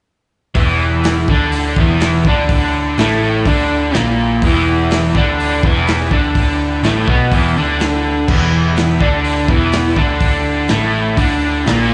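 A crunchy, double-tracked electric guitar sits up front in this gritty, raw garage rock passage, picking an overdriven riff coated in harmonic tremolo and slapback echo. Beneath it, a picked hollow-body short-scale bass adds a round, amped low end, while a breakbeat drum kit of kick, snare, hi-hat and crash sounds saturated and smooth, with a tight kick, medium-tuned snare and dusky cymbals. A vintage combo organ sits in the background, holding buzzy, overdriven chords with heavy vibrato. All four parts enter together at 0.5 seconds and stay on a single E minor chord in a straight 4/4 groove. The sound is that of a live club gig heard through the venue's PA, with small-room ambience, club reverb and a dull, rolled-off top, in a short cut from a longer piece.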